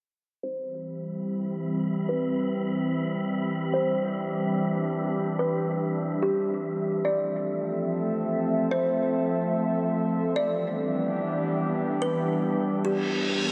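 A warbly, nostalgic, lo-fi pad sits up front in this blissful, dreamy hip hop fragment in free time, its detuned chorus haze holding sustained chords over Cmaj7, Fmaj7 and Em7 while a woody, hollow-sounding kalimba rings out a melody through a low-pass filter and analog delay. A breathy, wind-like tuned noise texture drifts beneath from 1.2 seconds, and a filter sweep runs through the whole passage before an electronic reverse cymbal rises in at 13.0 seconds. Everything is soaked in a cathedral reverb with a 6.6-second tail, giving the mix a dreamy, cloud-like softness.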